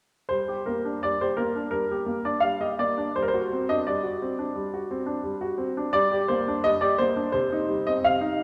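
A clear, natural grand piano enters at 0.3 s, up front and with short sustain, playing a restless yet elegant classical-period sonatina in G minor at 85 BPM in 4/4 with a rubato feel, moving from Gm through D7/G back to Gm and on to Cm before the passage is cut from the longer piece at 8.4 s, all set in the wet reverb of a concert hall.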